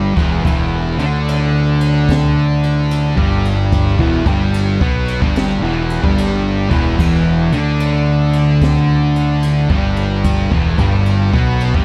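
The production is dry and dusky, with little reverb and a heavy, brooding weight that sits on a single E minor chord for this short passage cut from a longer stoner and doom metal piece. At a slow 74 BPM in 4/4 with a swung eighth-note feel, two thick fuzz guitars grind out a picked riff from the start, their dark, distorted tone set back in the background. A tight, double-tracked distorted guitar plays the riff with a brighter, picked edge. Up front, a fingered electric bass carries a growly, overdriven fuzz. A jazz brush drum kit enters at 0.2 s, heard in a small acoustic room with a boomy kick, high-tuned snare, and murky crash and ride cymbals. The unusual pairing of brushes against the crushing fuzz gives these 11.8 seconds their character.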